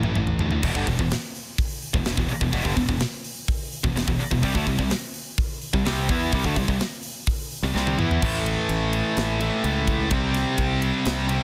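A straight 4/4 pulse at 127 BPM drives this aggressive, relentless heavy metal cut in E minor, opening on a drum fill before the tight metal drum kit, up front with bright cymbals and a tight kick, pushes through to a half-time feel from 8.2 seconds. Two heavy high-gain guitars play picked, distorted riffs in the background alongside a growling, overdriven fingered electric bass, while a double-tracked high-gain guitar joins the riffing at 0.6 seconds. The mix is dry and densely limited, with the chords moving from A5 through E minor and C5 to A and then back to C5 over this short section taken from a longer piece.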